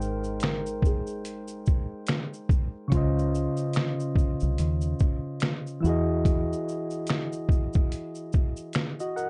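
Mellow and nostalgic, this lo-fi hip hop piece at 72 BPM with a swung 16th feel sets a thumpy, gritty trip hop sampler-style kit of kick, snare, hi-hat, shaker and finger snaps up front with vintage 12-bit crunch, alongside soft, detuned electric-piano-like synth keys coloured by chorus and cassette-tape haze over Abmaj9, Dbmaj9 and Emaj9 chords, while a boxy, thick-felt upright piano melody with audible action noise sits in the background under plate reverb and tape echo until 2.9 s and a round, foam-muted dub fingered bass plays until 6.5 s, in a dark, small-room production.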